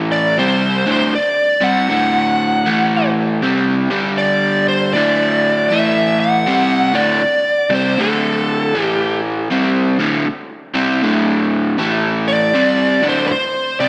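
A crunchy, double-tracked electric guitar opens this swaggering, raunchy rock passage, picking an overdriven riff in a low register, and a smooth, dark lead guitar joins at 0.1 seconds with a melody set high above it. Both guitars sit up front at the same level, and the lead carries a slapback echo that gives its phrases a quick doubled edge. The groove swings its eighth notes in a moderate four-beat pulse, and the harmony moves between D and A, with brief stops on C and G early on before settling into a repeated D-to-A pattern. A lush hall reverb with a long tail surrounds the pair, giving the recording a big arena sound. Both guitars play through to 13.9 seconds, as this short passage is cut from a longer piece.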